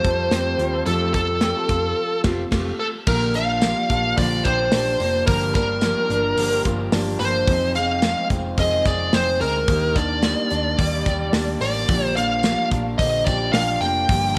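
A straight 4/4 pulse at 109 BPM drives this breezy, youthful jangly indie pop excerpt in Bb major, where a modern studio drum kit with a tight kick and medium-tuned snare and a round, hollow-body short-scale electric bass anchor a full-bodied jumbo acoustic guitar with audible finger squeak, a slightly broken-up electric guitar playing arpeggios through a small old amp with tape echo, and an up-front, smooth overdriven lead guitar carrying the melody, the mix set in moderate plate reverb, with a band accent from 2.0 to 3.1 seconds before a very quiet, jingly vintage tambourine joins at 3.1 seconds as the chords move from Fadd9 through Bb6, Gm7, Fm7 and Ebmaj7 back to Bb6.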